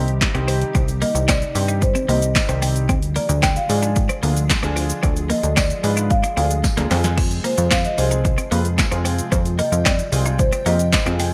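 A punchy analog drum machine with a tape-warm kick, snare, handclaps, hi-hat, shaker and crash, plus a fill at 6.6 seconds, drives this bittersweet, energetic dance-pop excerpt at 112 BPM alongside a plucky, funky sawtooth bass with sidechain pumping, a woody soft-mallet marimba melody with delay, a clear baby grand piano accompaniment with subtle chorus and pumping, a twangy twelve-string electric guitar riff through analog chorus, a glassy FM pad holding very quiet sustained chords, and a faint, jingly tambourine, all set in bright 1980s-style digital production with light reverb as the harmony moves from Cm to Ddim to Fm.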